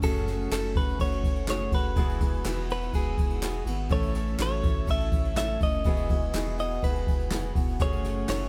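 A brush-played drum kit sits up front in this uplifting, anthemic piano-driven pop clip, its boomy kick, medium-tuned snare, dark cymbals and handclaps sounding airy and polished in a small room. The tempo is a straight 124 BPM in 4/4, and the harmony moves through F#madd9, Eadd9, A and Eadd9 before returning to F#madd9. A bright, compressed electric guitar, recorded direct and clean, carries the picked melody, while a grand piano supplies present, warm accompaniment. Underneath, a round analog bass with a deep, dark, evolving tone and fast attack anchors the low end, and a full-bodied jumbo steel-string acoustic guitar plays a picked riff. A very quiet detuned sawtooth pad holds smooth sustained chords with slow attack, chorus and a moving notch, and a very quiet, jingly tambourine enters at 0.2 s. The band sounds as if playing live in one room, with light reverb and a faint mains hum, in this excerpt cut from a longer piece.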